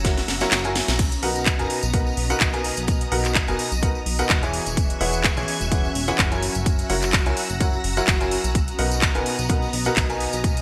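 A swung house groove at 127 BPM in 4/4 drives this joyful, feel-good piano house clip in B major. It opens with a drum fill during which the kick drops out from 0.5 to 1.0 seconds. A punchy, tape-warm electronic kick anchors the beat. An up-front house kit of cracking snare, metallic hi-hats, handclaps and crash cymbal sits in gated reverb, with a vintage, band-limited tambourine in the background. A clear, worn concert grand piano plays a present riff with delay, over a dark, funky analog bass whose filter pluck gives each note a fast attack. Shimmering string-machine violins hold bright chords, and an ethereal, detuned pad floats behind them. Piano, bass, strings and pad all pump against the kick, cycling through F#7, Bmaj7 and E69 in a bright 1980s-style digital production with light reverb.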